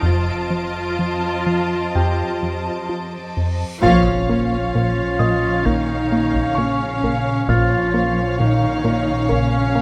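Ominous and uneasy, this slow cinematic suspense cue sets lush bowed violins, violas, cellos and double basses over a plucky, punchy analog bass riff and a bright grand piano with audible action noise, while high distant violins add a texture until 3.3 s, then a huge reverse cymbal and impact mark the turn at 3.8 s, where a solo up-front clarinet and heavy-stick taiko ensemble join the closely miked, lightly reverberant mix.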